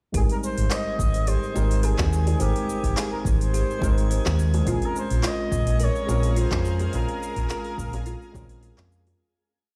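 A lightly swung 4/4 groove carries this smooth, blissful sunset chillout piece: a soft, overdriven electronic kick and a light lounge beat of metallic hi-hat, shaker and handclaps sit under a dark, round fingered electric bass up front playing a dotted rhythm, while very quiet, high-tuned bongos join at 1.6 seconds. A barky, lightly overdriven tine electric piano holds rootless chords with syncopated pushes under a filter sweep, and a woody kalimba rings out a six-step arpeggio loop that drifts against the bar through tape echo. A distant flugelhorn with light vibrato sings song-like motifs, a twinkling granular texture sparkles on a held high note in the background, a shimmering, ethereal ambient pad enters at 5.7 seconds, and the piece fades out from 6.2 seconds.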